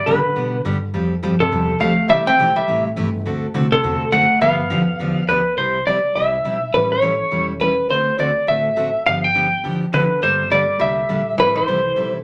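Playful and cheerful, this swinging country excerpt puts a clean, compressed lap steel guitar up front on the melody, gliding on slide with volume swells, while a warm dreadnought acoustic guitar picks an accompaniment, finger squeaks and all. Beneath them, a dark, hollow-bodied archtop guitar picks a second line that drops out at 5.2 seconds and returns at 9.9 seconds, and a woody, growly upright bass plucks the low end. The chords move from G through C and A7 toward a darker Gmadd9 and Am7, all set in a wet club reverb.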